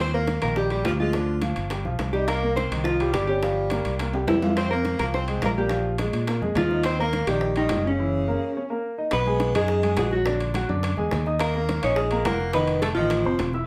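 A dark, clean hollow-body jazz guitar carries the melody over a raspy, growling tenor saxophone line and a punchy, bright fingered electric bass up front, with a warm, short-sustained baby grand piano comping and round, low-tuned bongos and ringing metal-shell timbales joining in this lively, sunny Afro-Cuban jazz excerpt at 211 BPM in straight 4/4, set back in a wet studio room, with a drum fill at 4.1 seconds and a break at 8.0 seconds before the music shifts from Eb major to B major at 9.1 seconds.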